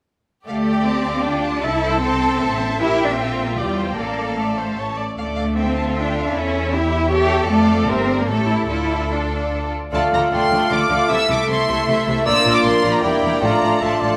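This excerpt from a longer classical-period movement sits in a wet recital hall reverb, giving the full string body a resonant bloom. In D minor at 154 BPM in 3/4, with a rubato feel, the mood is dramatic and stormy from the outset. A lush violin section carries the melody with vibrato and portamento, while a rich second violin section supplies a second line and a focused, distant viola section fills in the accompaniment. Beneath them, the cello section adds soft-attacked, expressive bass with portamento, joined in the low register by a distant double bass section. At 9.9 s the woodwinds join in the background and the brass enters as the opening material returns: an airy, straight-toned flute, a punchy cor anglais and a bright, vintage-sounding clarinet each take a second line, the bassoon adds accompaniment, and a tight French horn section holds smooth sustained chords until the close at 14.2 s.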